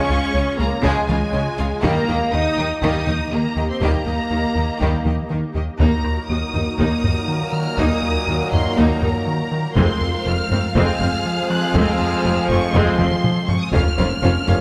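A tense, vast hybrid orchestral and electronic film cue at 121 BPM opens on a dark, woody violin melody with vibrato over softer second violins, distant viola accompaniment, sustained chords from bright trombones, mellow French horns and a hollow, warbling pad with ensemble chorus, before a rubbery square-wave bass riff, focused cellos and smooth double basses anchor the low end and compressed, saturated taiko drums with hard sticks enter at 0.8 seconds, landing a fill at 13.0 seconds as the harmony moves through Db, Eb, Ebm and Fm in a reverberant recital hall.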